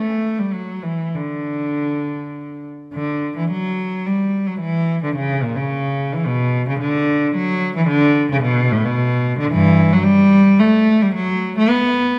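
Set in a moderate recital-hall reverb with a 1.6-second decay, this serene, radiant passage from a baroque-style classical suite movement in 3/4 at 109 BPM features a single bowed cello played solo and up front throughout, its rich, vibrato-laden tone staying smooth and even from G2 to B3 as it moves with a rubato feel, tuned to A4 = 439 Hz.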